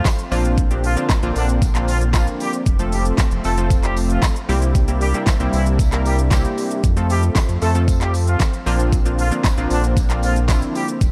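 Upbeat and summery, this dance-pop excerpt at 115 BPM in straight 4/4 sets a clear, vibrato-tinged horn section carrying the melody over a punchy, detuned polysynth comp, a lush unison pad in the background, a knocking, fat-snared pop drum kit with handclaps and shaker up front, a jingly tambourine, and a round analog bass entering at 0.3 seconds, with sidechain pumping on the horns, synths and bass through a chord cycle of Bbadd9, F, C7 and F in a dark, light-reverb production.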